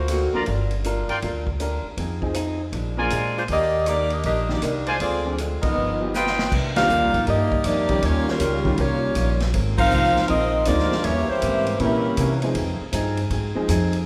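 A swung 4/4 pulse at 159 BPM drives this energetic, brassy big band swing excerpt, with a woody pizzicato upright bass up front over a vintage drum kit that has a punchy kick and rolled-off top, while a boxy fingerpicked acoustic guitar with finger squeak and a smooth grand piano accompany in the background. A clear trumpet section plays stabs until 6.5 s, when the music settles into C minor; a tight saxophone section with vibrato carries the melody from 3.4 s, and a trombone section adds a second line from 5.6 s. Band accents and a short drum fill mark the turn into the new section, heard in a reverberant concert-hall space.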